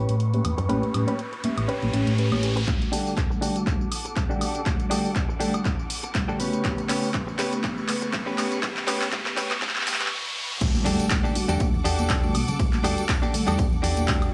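A rich, bowed violin section holds sustained chords in the background as a clean, picked guitar riff and a dark, round hollow-body bass open this funky, groovy filtered disco house excerpt in E dorian at 121 BPM with a swung 16th feel, soon joined by a dry analog drum machine with claps, hats, ride, crash, tambourine and woodblock, close hard-hand tambourine and congas, a mellow phased tine electric piano, and a background riser and impact, before an up-front punchy kick enters at 2.7 s to drive a build-up with a drum fill and filter sweep, and after a brief break the drop arrives at 10.6 s with the congas and tambourine returning over Em11.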